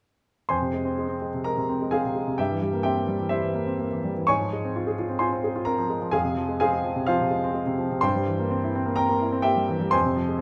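Flexible rubato phrasing in common time drives this passionate, agitated classical piano study, a short passage from a longer virtuoso piece. A solo grand piano plays from 0.5 to 10.4 seconds, sounding intimate, natural and up front with audible action noise, and its harmony moves between Fm, C7/G and Fm/Ab. A moderate reverb from a large studio surrounds the instrument.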